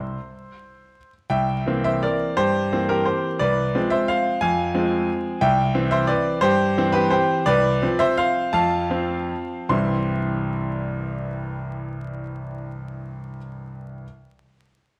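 A moderate recital-hall reverb and a layer of vinyl crackle frame this short, playful and elegant classical waltz for solo grand piano in C major, cut from a longer piece and tuned to A4 = 439 Hz. The piano sits up front with a clear, intimate, natural tone, long sustain and audible action noise, spanning C2 to C6 in a rubato 3/4 that moves between 141 and 187 BPM. Its harmony drifts from C through Fm/C and F/C back home, and the pace slows from 7.0 to 9.7 seconds before a closing passage that returns to C.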